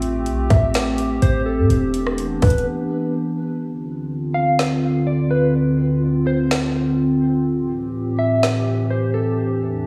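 Melancholic and ethereal, this half-time cloud-rap excerpt floats on a warbling, lo-fi, tape-like pad with chorus and sidechain pumping, while a boomy, sine-toned 808 bass drops out at 2.7 s and an up-front trap kit with a hard-clipped kick, woody snare and metallic hats plays until 8.5 s, beneath a mellow, clean, fingered electric guitar melody softened by a low-pass filter and diffuse ambient delay, inside a dreamy, reverb-soaked mix.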